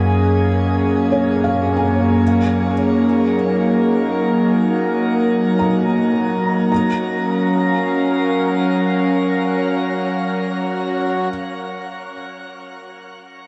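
Peaceful and weightless, this free-time ambient fragment in F# major places a warbling, nostalgic tape-like pad up front with chorus and its own reverb, while a reedy, breathing harmonium drones very quietly beneath until 11.3 s and a soft, felt-muted upright piano with audible action noise adds delayed arpeggios from 1.1 s, inside a lingering shimmer reverb as the harmony moves from A#m7/F# to F#maj7 at 6.7 s.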